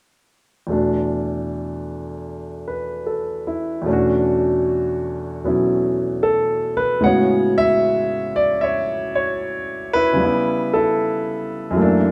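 A clear, natural piano sound sits up front in a room with light reverb, captured live in a single space. This is a short solo jazz passage cut from a longer piece, relaxed and sophisticated in mood, moving at 76 BPM in 4/4 with a gentle swing on the eighth notes, in A major. A concert grand piano plays alone throughout, reaching from a deep bass at E2 up to F#5. The opening phrase rests on suspended, open harmonies, E7sus4 and then Bm11/E, before the music turns at 7.0 seconds to a lush Amaj13. It closes on a darker C#m7b5, leaving the harmony hanging as the passage ends at 12.1 seconds.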